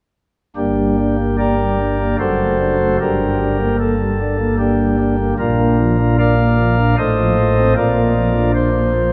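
A pipe organ played on soft flute stops carries this grave, solemn fragment of a classical chorale-style piece, sounding alone and up front from 0.6 to 9.1 seconds. Its warm, romantic voicing spans F#1 to F5, giving the chords a gentle, rounded fullness. The music sits in G minor, in 3/4 at about 76 BPM, with a flexible rubato feel. It is tuned to A4 = 441 Hz. The harmony moves from G minor through D7 over F# and back, then settles toward B-flat by way of F7 over A. A deep cathedral reverb, lasting about 5.3 seconds, places the organ in a vast, echoing space that deepens the hushed, reverent mood.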